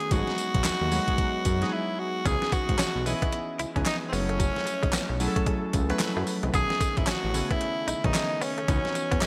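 A raspy, forceful tenor saxophone with digital delay leads from the start over chorused analog keys and a crisp, thumpy 8-bit drum machine with gated reverb, joined at 0.1 seconds by a fat, detuned analog bass, in a punchy, confident, swung new jack swing groove at 112 BPM in C# minor that moves through minor-ninth and thirteenth chords, with a brief break at 1.7 seconds before a twangy, clean electric guitar riff enters in the background at 2.3 seconds, all in a bright 1980s-style production with a lush hall reverb.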